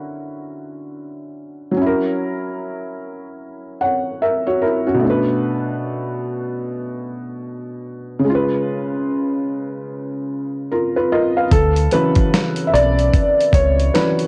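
Dreamy and cosy, this lo-fi hip hop excerpt at 74 BPM with a swung 16th feel in D major opens with a soft, boxy felt-muted upright piano moving through Dmaj9, F#7, Bm7 and C#7 chords under light reverb and a home-cassette haze, until at 11.5 seconds the piano steps forward as a solo while a dark, round fingered electric bass and a gritty, compressed sampler-style drum kit with a thumpy kick and tape colouring join in.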